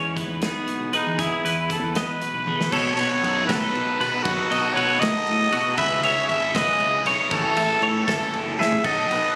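Math rock with a Midwest emo tint, this bright, intricate fragment of a longer piece moves in a straight 6/8 and is led by a raspy, growling trumpet that carries the melody up front with a light vibrato. Two twangy, clean twelve-string electric guitars chime beneath it, one picking out accompaniment that drops out at 4.3 seconds, the other spinning high arpeggios through an ensemble chorus for the whole stretch. A round, fuzzy fingered bass with overdrive anchors the low end, while a loose indie drum kit with dark cymbals and a tight kick plays in a small room, marking fills at 2.5 and 8.6 seconds. At 2.7 seconds a biting, double-tracked overdriven guitar enters with a phaser-treated riff as the harmony shifts from Emaj7 into a B9, C#m9 and A6 progression. The sound is dry and compressed, with the close, roomy character of a phone recording.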